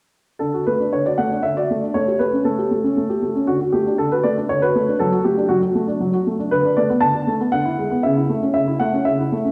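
A warm baby grand piano carries this graceful, playful classical-period sonatina on its own, sounding from 0.4 to 9.5 seconds in a brief passage cut from a longer piece. Set in a lilting three-beat metre with a supple rubato feel, the phrasing breathes and flexes like a dance. The piano's tone is open with a long sustain, and it sits up front in the mix, moving between C#3 and A5. A wet recital hall reverb surrounds it, lending the sense of hearing the performance from further back in the room. The harmony moves between tonic and dominant chords in D major before shifting to A major around 6.5 seconds, giving the fragment a gentle sense of forward motion.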